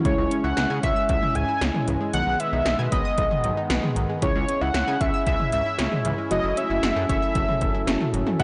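A straight, driving 4/4 beat from up-front 80s electronic pad drums, with a punchy kick, metallic hats and gated reverb on the snare and toms, powers this melancholic synth-pop excerpt, anchored by a glossy, chorused synth bass with transformer saturation. A bold, octave-doubled sawtooth lead carries the melody up front with delay, while a sweeping resonant pad with phaser, muted felt-like synth keys and a round analog pluck spinning arpeggios sit in the background over a C#m, G#m/B, C#m, F#m7 progression. The blown-out, overdriven recording sits in a lush hall, and a clear baby grand piano strikes a single note at 8.4 seconds.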